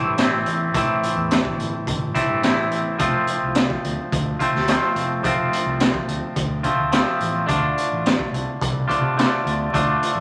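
Trippy and mysterious, this short excerpt of straight-feel psychedelic rock in 4/4 sets a bright, twangy picked electric guitar riff with harmonic tremolo up front over a dark, round, overdriven fuzz bass, while a gritty, saturated garage drum kit with a punchy kick and high-tuned snare joins at 0.2 seconds, all moving through Am, F and Dm in a moderate club reverb with vinyl crackle.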